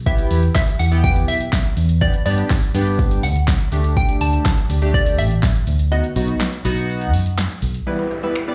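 A straight 4/4 groove at 123 BPM drives this confident dance-pop excerpt in E minor, built on an overdriven deep house kit with deep kick, punchy snare, hi-hat, shaker, snaps and claps, a dark, round, foam-muted electric bass pumping up front, a glossy chorused polysynth sweeping through Em, G, Dsus4 and B, a hollow, bouncy square-wave pluck melody with chorus and digital delay, and a very quiet jingly tambourine, before a break from 5.9 seconds leads to a woody, mallet-like pluck arpeggio and an electronic downlifter at 7.9 seconds, all set in a stone-room reverb as if blasted through a big sound system in a bare space.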